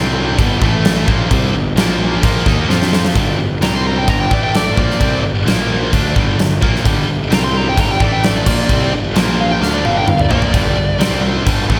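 Hard rock with an aggressive, driving feel, built on two riffing electric guitars, one crunchy and set back in the background, the other bright and high-gain, over a dark, round fuzz bass and a huge, up-front arena drum kit with a fat snare, punchy kick and bright cymbals. After a drum fill at 2.7 seconds, a smooth, dusky overdriven lead guitar carries a solo melody from 3.6 seconds, colored by slapback echo and digital delay, with another drum fill near 9.6 seconds. The whole mix has a big arena sound in a moderate hall reverb, and it is cut from a longer piece.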